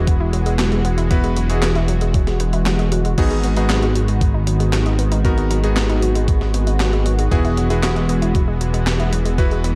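A dark, warm, dry production opens this nocturnal, cinematic synthwave excerpt at 116 BPM in a straight 4/4, moving from Eadd9 to G#m7 and back. A fat, detuned sawtooth bass sits up front, pumping with the sidechain beneath a smooth, chorused pad of sustained chords. A round, nasal analog pluck in the background runs arpeggios through chorus, tape and digital delay, while a bright, clangy electric grand piano cuts in with delayed stabs. From 0.1 s, a thumpy electronic kick and an 80s drum machine, both tape-warm and re-recorded in a small room, drive the groove, the machine's snare, handclaps, hi-hat and crash carrying gated reverb.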